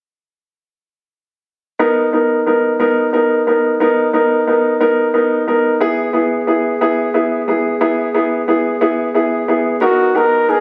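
Pop in B major with a romantic, swaying 6/8 lilt at 60 BPM, this short cut from a longer piece opens at 1.8 s with a bright, woody upright piano playing accompaniment up front alone over Bmaj7 and E chords. At 9.8 s a warm flugelhorn enters for a brief, close-miked, jazz-style solo melody with light vibrato as the harmony returns to Bmaj7. The sound has the intimate feel of a phone recording in the room, touched with light studio reverb and compression.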